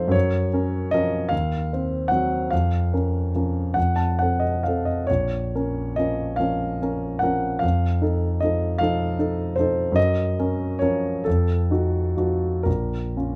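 A solo concert grand piano, intimate and up front with deep bass, short sustain and audible action noise, carries this yearning, wistful romantic nocturne in Bb minor, played with rubato in a slow 12/8 at roughly 39-53 BPM. Cut from a longer piece, the 13.4-second passage moves through a harmony that opens on Gbmaj7, passes through Cdim/Eb and F7, and arrives home on Bbm by way of F7b9. A light reverb gives the close, vintage-toned instrument a gentle sense of space.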